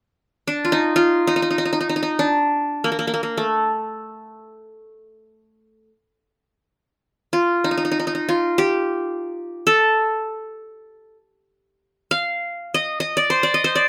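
A lone acoustic qanun enters at 0.5 s and carries a melancholic, soulful Turkish melody in free time, set in makam kurdi on D and ranging from A3 to F5, its bright, plectrum-plucked triple strings placed up front with light reverb in a rough home demo mix, in this excerpt cut from a longer piece.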